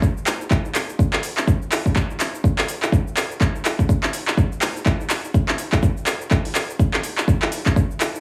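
The recording is dry, with only a small room ambience around it, and both drum parts sit up front with an overdriven grit. This is a short excerpt of house music at 124 BPM in 4/4, with a 58% swing on the sixteenths that gives it a warm, hypnotic pull. A layered electronic kick drum with a deep weight runs from the start until 7.9 seconds, and it was re-recorded in a large room. Above it, a deep house drum kit plays handclaps, hi-hat and shaker through to 8.2 seconds. Its metallic hats stand out, and this kit is also layered and re-recorded in a large room.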